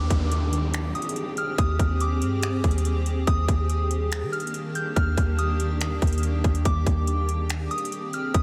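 Over a half-time trap beat at 142 BPM, an overdriven drum kit up front pairs a hard-clipped kick with metallic hi-hats and finger snaps, while a deep, round 808-style bass sits beside it. A blurred, detuned granular pad holds sustained chords moving from Abmaj7/Eb to Ebmaj7 and back, pumping under sidechain with lush chorus, and a pure FM synth bell carries a mellow high melody through chorus, low-pass filter and delay. An electronic downlifter sweeps through the first 3.3 seconds, and the whole dreamy, reverb-soaked mix feels blissful and floating in this cloud-rap excerpt.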